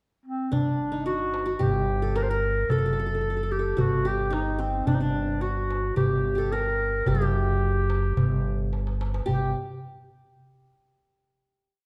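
Arabic maqam ensemble piece, hypnotic and melancholic, in which a breathy, whispered clarinet sits up front with an intimate, vintage modal melody, ornamented with light vibrato and scooped notes, entering on a pickup at 0.3 s. A plectrum-plucked qanun with a bright edge follows the same line with its own ornaments, while a woody, growly pizzicato upright bass places its notes on the low strokes of a crisp metal-shell darbuka. After a darbuka fill at 8.7 s, the ensemble settles on a final note that rings into a moderate recital-hall reverb.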